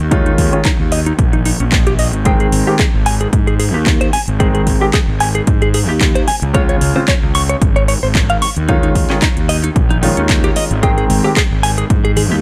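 A dry sound carries this sunny, groovy nu-disco excerpt: a round, fuzzy fingered electric bass sits up front with a punchy overdriven electronic kick, while a house kit adds handclaps and metallic hi-hats under a lightly swung 16th-note feel. A clear grand piano, roughened by 12-bit sampler grit, sidechain pumping and delay, accompanies through Eb9sus4, Abmaj7 and Db. Above it, a bright, compressed clean electric guitar picks a riff through chorus, a low-pass filter and delay, and hard-handed congas join in the background at 11.1 seconds.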